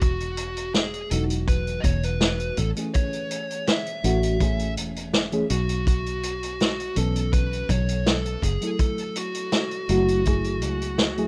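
A shadowy, overdriven lead guitar carries the melody in this short vaporwave excerpt, its picked line smoothed by tape echo and sitting somewhat back in the mix. The mood is nostalgic and melancholic, moving at an unhurried 82 BPM in straight 4/4 within F# dorian, over chords of Esus2, Amaj7, B9sus4 and F#m9. A mellow FM electric piano joins at 1.1 s, soft and warbling with tremolo, lush chorus and a faint noise layer beneath its quick-attack, decaying notes. Underneath, a fingered electric bass sounds round and foam-muted up close. An acoustic vintage kit of hi-hat and medium-tuned snare and a punchy kick sit mid-forward with rolled-off tops, and the kick drops out at 10.4 s. The room is nearly dry, giving the piece the feel of a rough home demo.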